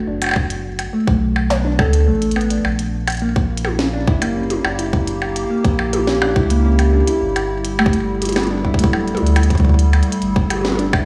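A harp-like synth pluck and a round, deep sine sub bass open this eerie, cerebral IDM excerpt at 0.1 s, the pluck ringing softly through arpeggios with chorus, cassette-tape colour and digital delay. Moments later a glitchy drum kit of tiny snare, clicky hats, toms and percussion blips arrives, followed at 0.4 s by a tight electronic kick sitting up front alongside the mellow, sustained bass. At 3.8 s a warbly, detuned tape-like pad fades in with sustained, nostalgic chords, its ring-modulated, lo-fi tone roughened by vintage 12-bit sampler grit and softened by chorus and its own reverb. The harmony drifts from Bm7 to F#7b9 and settles on G69, giving the straight 4/4 groove a shadowy, unresolved tension. The whole mix sounds as if played through a big sound system in a bare stone room, with light reverb and small-room ambience framing the produced drums.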